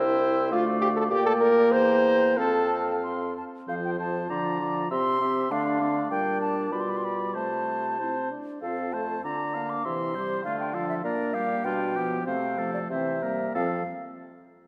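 A lilting 2/4 pulse with a flexible, rubato feel carries this graceful, cheerful movement for wind quintet in the classical style, a short passage cut from a longer piece. The concert flute leads the melody high above the ensemble with a pure, straight tone and crisp attack, while the oboe sings a warm second line with vibrato and a smooth top. The French horn, clear with light vibrato, and the mellow clarinet fill in the accompaniment from a roomy, distant placement, and the bassoon anchors the bass with a mellow, vintage-tinged tone. The harmony moves through simple cadential progressions that return again and again to F, and the pace broadens noticeably from 10.4 to 13.6 seconds before settling on a final F chord. A generous concert hall reverb wraps the ensemble in a wet, resonant space.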